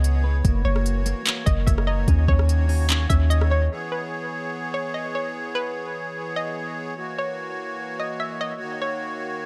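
A half-time hip hop groove from an overdriven, up-front R&B drum kit with a soft kick, crisp hi-hat, handclaps and rim click drives this spacious, ethereal cloud-rap excerpt, alongside a deep, round 808-style bass and clean, compressed electric guitar arpeggios under dub echo. From the start, a reedy, sweet accordion holds sustained chords with light tremolo tuning and sidechain pumping, while a hollow, bouncy, detuned square-wave pluck carries the melody through chorus and dub echo; both carry on after the drums drop out at 3.5 s and the bass and guitar at 3.7 s. Digital ambience soaks the whole piece in echo over a progression of minor and dominant seventh chords.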